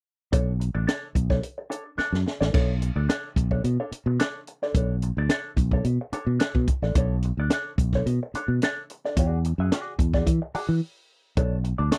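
A warm, fingered electric bass sits up front in this cool, sly funk groove at 109 BPM in B dorian, a short cut from a longer piece. Beside it, a compact cocktail drum kit with a punchy kick, high-tuned snare and dark cymbals gives a mid-forward, rolled-off feel, with hi-hat, snare, kick and crash cymbal. A clean, compressed semi-hollow guitar adds accompaniment further back in the mix, its hollow-body tone colored by wah. The harmony rests on Bm9, and a drum fill around 2.0 seconds opens the main stretch of the groove. It moves to E9 at 9.2 seconds, then a brief break at 10.8 seconds leads back to Bm9. The sound is dry and close, in the manner of a 1970s studio recording.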